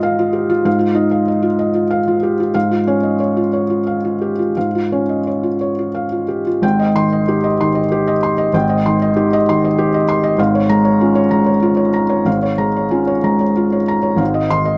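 A 6/8 pulse with rubato sets this brief, intimate excerpt of neoclassical minimalist piano, peaceful and unhurried throughout its 14.8 seconds. A felt-muted upright piano plays solo, soft and mellow with audible action noise, ranging from deep bass notes to the upper register over chords that drift from Fm7/Ab and Db/Ab to Abmaj7 at 6.6 seconds. Recorded close and detailed with little reverb, the piano sits up front, smooth and vintage in character.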